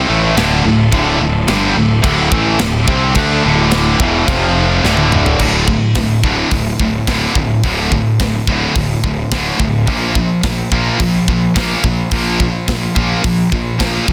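Dark and epic, this heavy metal cut opens with a very quiet, rich bowed string section holding sustained chords under a biting, double-tracked overdriven guitar riff and two high-gain guitars, one heavy and one scooped, all picked and set in the background behind a growly, punchy fingered bass with fuzz. A tight, up-front drum kit with bright cymbals enters at 0.4 seconds and plays a fill from 4.8 seconds, after which the strings and biting guitar drop out at 5.4 seconds, leaving the two distorted guitars, bass and drums to drive on power chords. The sound is dense and dry, with a heavily limited modern master.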